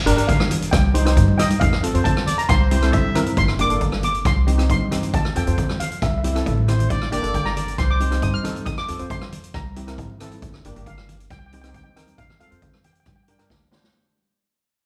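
A woody, thumpy pizzicato upright bass on gut strings opens this dramatic, driving calypso at 136 BPM. A metallic double-seconds steel pan accompaniment, a boomy, up-front street-band drum kit with a medium-tuned snare and rim clicks, a shimmering lead pan melody on hard rubber sticks, and vintage, band-limited congas in the background join almost at once. A clear, distant trumpet with light vibrato adds a brief second line at 2.3 and 6.7 seconds over a looping Gm–Cm–F–C7 progression. A drum fill closes at 13.5 seconds as the whole passage fades within a moderate recital-hall reverb.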